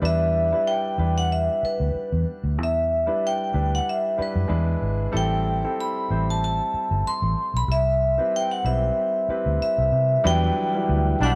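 Soul with a bittersweet, smooth mood and a gentle swing, cut from a longer piece in common time. A vibraphone struck with hard mallets carries the melody up front, its metallic ring colored by a fast motor vibrato and a boxy small-room sound. Beneath it, a foam-muted vintage electric bass sits dark and round, while a concert grand piano supplies quieter accompaniment with a natural, deep low end. Near 10.3 s a tonewheel organ slips in behind with clean sustained chords, shaded by chorus vibrato and a slow rotary speaker, and at 11.2 s a bright trombone section lands a brief, soft-edged stab. A moderate plate reverb lends the recording a lingering space, and the harmony moves from Em7 through E7, Am7 and Cmaj7 to an Em9 at the close.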